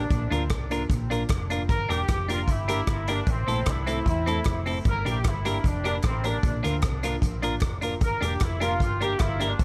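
A straight 4/4 ska groove at 152 BPM in G dorian drives this energetic, mischievous fragment of a longer piece: a swinging big-band drum kit with a punchy kick, hi-hat and rim click sits up front in a big, dark room, joined at 0.5 seconds by crisp group handclaps in the background, while a round, hollow-body fingered electric bass anchors the low end. A bright, twangy clean electric guitar and a woody, vintage upright piano with dub echo on its stabs accompany a mellow, soft-attacked jazz-style horn section, itself treated with dub echo and light vibrato, carrying the melody over chords moving between Bb, Gm and Am. Light reverb wraps the whole.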